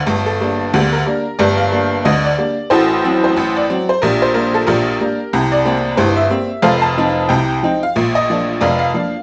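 A lightly swung sixteenth-note feel in 2/4 gives this ragtime piano passage a bouncy, playful lilt. The only instrument is a solo tack piano, heard for the full 9.2 seconds, with a metallic, jangly tone that sounds distinctly vintage. Its percussive attack carries a cheerful spirit across a broad span of the keyboard, from the low bass up into the bright upper register. The harmony moves from Gm through F#dim/A and Gm/Bb to C7 and F7 before settling on Bb. A wet studio reverb places the piano further back in the room, lending the short cut from a longer piece a sense of space around its lively character.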